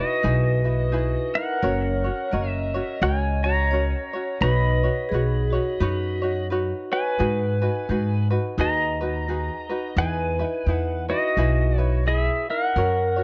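A twangy electric pedal steel guitar carries the melody up front in this languid, sunny Hawaiian piece at 86 BPM with a swung 4/4 feel, its clean, compressed tone shaped by fingerpicks, slide and volume swells. A ringing, metallic vibraphone with medium hard mallets, slow motor vibrato and analog delay adds a second line until 6.9 seconds and returns at 12.8 seconds, while a light, fingerpicked tenor ukulele picks out the accompaniment. A woody, thumpy upright bass with steel strings enters at 0.2 seconds, moving through Emaj7, F#, Badd9 and G#m7 in a dark, small-room production cut from a longer piece.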